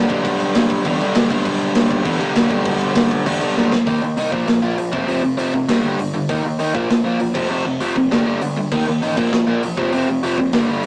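Punk rock with an energetic, upbeat drive, cut from a longer piece and captured as a rough rehearsal-room recording with tube saturation, light reverb and a small-speaker sound. A biting overdriven guitar, double-tracked and up front, carries the riff, while a dark, round fuzz bass sits in the background with a punchy, overdriven edge. A big acoustic rock kit, also up front, brings a punchy kick, a medium-tuned snare, hi-hat and crash cymbal. After a drum fill at 3.6 seconds, the band drops into a half-time feel at 3.9 seconds. From there the music cycles through power chords on Eb, Bb, F and G for the rest of the clip.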